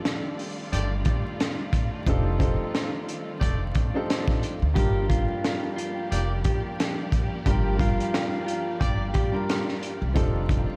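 Boom-bap hip-hop at 89 BPM in G minor, dark and gritty, with crunchy, saturated breakbeat drums up front carrying a tight kick and high-tuned snare through 12-bit sampler grit, while a woody, thumpy pizzicato upright bass holds the low end. An intimate upright piano with audible action noise and a tape-worn tone comps over F13 and Gm7 harmony, backed by distant bowed strings with vibrato and portamento and very quiet, roomy horn stabs. At 4.8 seconds a clean, fingered electric guitar adds a short melody through spring reverb and analog delay, the whole mix dreamy and soaked in a huge ambient reverb with vinyl crackle.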